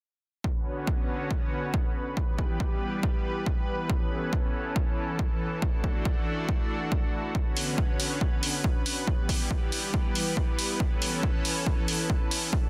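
A lush, detuned sawtooth pad with chorus and sidechain pumping carries sustained chords through this soaring, bittersweet uplifting trance excerpt in B minor at 139 BPM, moving from Bmadd9 through Em, Aadd9 and Dadd9 over a punchy, tape-warm electronic kick, joined at 7.6 seconds by an up-front analog hi-hat, all set in light digital reverb within a dense, heavily limited master.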